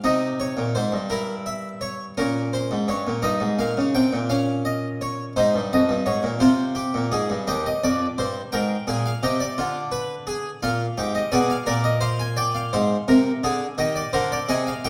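Moving in 12/8 at 57 beats per minute, counted in dotted quarters with a straight feel, this elegant and joyful passage comes from a baroque-style fugue in three parts. A single harpsichord carries all three voices, spanning Eb2 to Ab5. Its tone is brilliant, plucked and full, the sound of an Italian-style instrument with three sets of strings. The harpsichord is close-miked and sits up front, with the room adding a recital hall's 1.4-second reverb. The harmony is in Ab major, tuned to A4 = 439 Hz, and passes through diminished and dominant seventh chords as it moves from Ab toward Eb by 13.8 seconds, where this passage of a longer piece breaks off.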